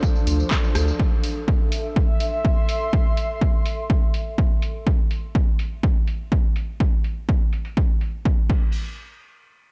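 A steady, straight 4/4 acid house groove at 124 BPM in A minor drives this hypnotic, gritty fragment, with an overdriven, punchy electronic kick up front and an overdriven analog drum machine of filtered hi-hat, handclaps, rim click, tambourine and crash cymbal set in a large room, while a detuned sawtooth pad with chorus and tremolo sits in the background for the opening second on Dm7, a thick, saturated sine sub bass pulses briefly between 0.3 and 0.9 seconds, and an airy, breathy pad with a noise layer and ring modulation drifts over Am until 4.9 seconds, leaving the drums alone under light reverb.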